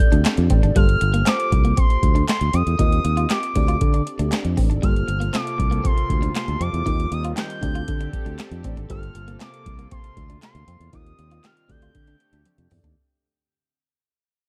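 Late-night and slick, this early-eighties boogie funk excerpt in G minor moves at 118 BPM in a straight 4/4, cycling through D7sus4, Gm11 and Eb69 with a dark production and digital ambience, fading out across its full 13 seconds. A booming analog drum machine sits up front with a deep kick, crisp snare, handclaps, metallic hats and toms, alongside a growly, punchy fingered bass, while a dreamy FM electric piano with a soft pad layer, treated with chorus and phaser, and a bright, compressed clean guitar riff drenched in lush chorus sit further back. A smooth, mellow sawtooth lead carries the melody with vibrato and expressive portamento, a shimmering pulse-width pad joins with sustained chords at 4.8 seconds, and a drum fill closes things at 12.5 seconds.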